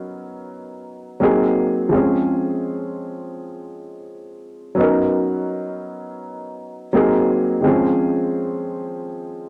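The rhythm sits at a relaxed 84 BPM in 4/4, with a gentle swing on the sixteenth notes that gives this brief hip hop fragment a loping, unhurried feel. A single dark upright piano carries the whole 9.5 seconds alone, playing in Db major within a middle range and moving through lush chords, Cbmaj9, Ab9 and Dbmaj7, that return in a short cycle. The piano's tone is mellow and woody, with short sustain and audible action noise that keep it intimate and up front, and a cassette tape character colours its sound. Around it, a light reverb and small room ambience frame a dry, gritty hardware recording touched by transformer saturation. The mood is dreamy and cosy, like a loop lifted from a longer piece.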